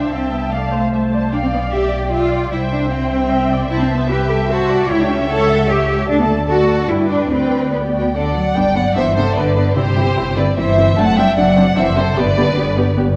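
Lively and graceful, this quick classical-period string orchestra movement in 3/4 at 150 BPM moves from C major toward G major from 3.7 s, with a rich, smooth violin section carrying the melody over a distant, lush second violin line and warm, expressive viola accompaniment, while an up-front, focused cello section and a clear double bass section anchor the bass, all bowed with vibrato in a reverberant concert hall and colored by worn, warbling cassette tape drift.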